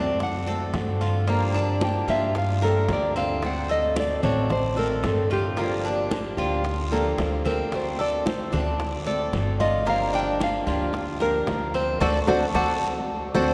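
A sultry, danceable stretch of Cuban son and guajira, cut from a longer piece, sways in a straight 4/4 over a simple back-and-forth between D7 and Gm7. A fingerpicked nylon-string guitar carries the melody as a solo throughout, its classical tone warm, with finger squeaks audible on the strings. Beneath it, a picked steel-string acoustic guitar picks out full-bodied accompaniment with fresh, bright strings, while a Cuban tres adds metallic arpeggios from its doubled strings, and a pizzicato upright bass gives a woody, thumpy foundation. From 0.2 seconds, very quiet congas and low-tuned, round bongos join, played with hard hands close and dry, and a raspy guiro sits in the background. The whole group lands a band accent from 12.0 seconds, and the ensemble rings out in a cathedral-like reverb that gives the church or hall setting a long, airy tail.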